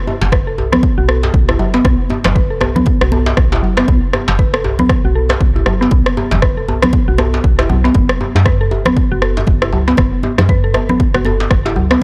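A tight, cracking djembe opens this driving afro house excerpt at 118 BPM with a swung sixteenth feel, joined almost at once by a soft, round FM bass with tube saturation and sidechain pumping, and by a punchy, overdriven electronic kick and a rim click set in studio reverb. A mellow, mallet-like synth pluck plays arpeggios through chorus and tape echo under a filter sweep that runs the whole 12 seconds. Thick-skinned, high-tuned congas sit in the background as the harmony holds on a B5 chord before dropping away at 7.9 seconds, with a dry, gritty hardware sound and small room ambience.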